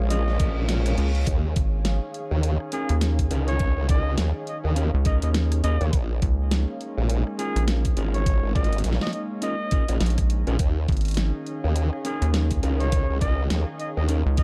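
Glitch hop at 103 BPM with a 16th-note swing, playful and funky. It sits in a dark, dry production over Bbm7 moving to Eb7sus4. A knocking, tape-warm electronic kick and a dubstep kit with a huge snare and bright hats drive it, while a saturated, formant-filtered wobble bass with chorus and overdrive sits up front, joined at 1.0 s by a rubbery, hollow square bass. A breathy jazz-style trumpet solo with vibrato, scooped notes and tape echo leads over clean fingered electric guitar stabs, which carry sampler grit, sidechain pumping and echo. Behind them a warbling, nostalgic lo-fi pad pumps with grit and a very quiet airy pad adds texture from the start, while a reverse cymbal sounds between 0.3 and 1.3 s.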